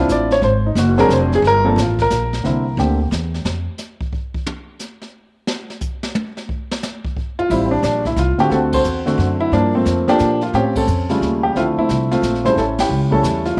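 A swinging 3/4 pulse at 178 BPM drives this cool, late-night jazz piano trio excerpt. The dark, intimate baby grand sits up front with slapback echo and audible action noise, carrying the melody over woody pizzicato upright bass and a brushed kit with a high-tuned snare and boomy kick. Piano and bass drop out so the drums play alone from 3.7 to 7.4 seconds, then the full band returns through chords such as Am7, D7 and A7alt, with band accents at 8.7, 10.7 and 12.7 seconds, all in a small room with spring reverb.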